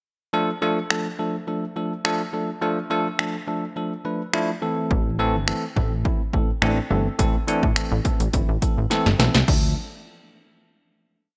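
A bell-like tine electric piano opens this short, complete dance-pop piece at 0.3 seconds, playing drop-2 chords in steady eighths with a sidechain pumping effect. A house drum kit joins almost at once with a syncopated pop beat built from a punchy kick and snare, hi-hat, finger snaps and crash cymbal, all layered and up front. At 4.9 seconds a plucky analog bass arrives, its sawtooth and pulse-wave tones giving a funky, syncopated line with slides and fast, decaying notes that also pump with the sidechain. The harmony moves from D minor to A minor, and a drum fill at 8.9 seconds leads into a closing D minor chord. The mood is bittersweet yet energetic, framed by light reverb and digital ambience in a bright 1980s-style digital production.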